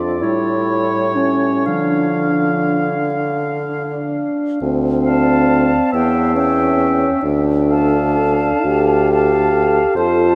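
In a slow, rubato 6/8 at roughly 39-49 dotted-quarter beats per minute, this melancholic, solemn classical movement for wind quintet in D minor opens with a dark clarinet and a warm, close-miked French horn in accompaniment over a mellow, up-front bassoon bass line. At 0.2 seconds a distant, softly attacked oboe with light vibrato joins on a second line as the harmony moves from A7 to D minor. At 5.1 seconds an airy silver concert flute with vibrato and tongued notes enters with the melody, passing over a C#dim/E chord before settling back on D minor, while a long cathedral reverb places the ensemble in a vast, echoing space and lends the fragment a grave, solemn air.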